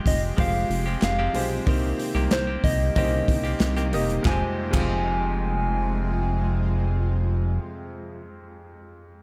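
A glossy, up-front chorused synth bass drives this dramatic piano-driven pop fragment in F minor at 93 BPM, joined by a round, gentle FM synth lead carrying the melody, a brilliant vintage grand piano, a twangy direct-recorded clean electric guitar riff, a shimmering phased ambient pad in the background, and a punchy, airy acoustic drum kit with hollow group handclaps from 1.0 s until both stop at 4.9 s, set in a lightly reverberant room.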